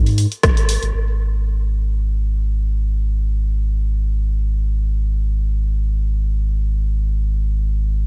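Meditative and hazy, this brief dub techno excerpt floats in free time, tuned slightly low to A4 = 439 Hz. A deep, round sine sub bass carries the whole passage from 0.0 to 8.1 seconds, ranging from G#1 to G#2, sitting up front with a fast attack and long sustain, coloured by tube saturation and a sidechain pumping effect. At the very start, a punchy analog drum machine adds a dry, overdriven hi-hat and rim click between 0.1 and 0.9 seconds, its hats and snare softened by low-pass filtering. An overdriven electronic kick drum lands at 0.4 seconds as a single accent across the band, the loudest element in the mix. After that opening flourish, the sustained sub bass holds the space on its own, and the gritty hardware sound, with little reverb, keeps the texture close and intimate.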